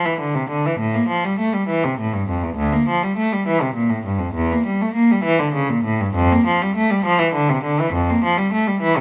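Classical, baroque-style suite movement for unaccompanied cello in a flowing, dance-like 12/8 at 68 BPM with rubato, as a lone player draws a rich, reedy gut-string tone with an airy bow from D2 to Bb3, set up front by close, detailed microphones in light reverb across this 9-second section cut from a longer piece.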